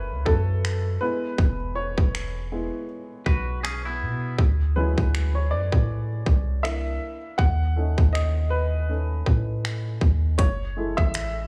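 A slow 80 BPM pulse in 4/4 swings its sixteenths, carried by an electronic trap kit of finger snaps, metallic hi-hats and a hard-clipped kick drum that sits up front from 0.3 s. This short contemporary R&B passage in F# minor feels sensual and late-night, built on a boomy 808-style bass with a sine core, a noise layer and a fast, decaying attack, also up front. A dark baby grand piano takes the solo role throughout, intimate and natural, with short sustain and audible action noise as it moves through F#m9, C#m7/E, Dmaj9#11, C9 and B9/D# before returning to F#m9. Between 3.3 and 4.4 s, a clean, compressed electric guitar adds brief fingered, twangy arpeggios coloured by tape echo. The sound is dry, with little reverb and only a small room ambience.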